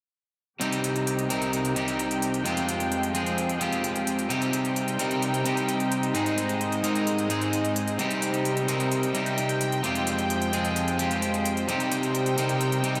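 A dreamy mix soaked in a huge ambient reverb opens this excerpt of festival progressive house, an emotional, euphoric passage in C minor at 130 BPM in a straight 4/4. An electric guitar at the edge of break-up carries the accompaniment up front from 0.6 seconds, its picked, twangy tone colored by tape echo. Beside it, a studio string section holds sustained bowed chords with a reedy, gut-string, period-style character and a smooth top, softened further by a low-pass filter. Crisp, layered electronic hi-hats sit lower in the mix, overdriven and re-recorded in a large room for added grit. The harmony moves from Cm to Fmadd9 and back to Cm, then to Ab and back to Cm, before passing through Fmadd9 once more and settling on Cm, with all three parts playing together until 13.0 seconds.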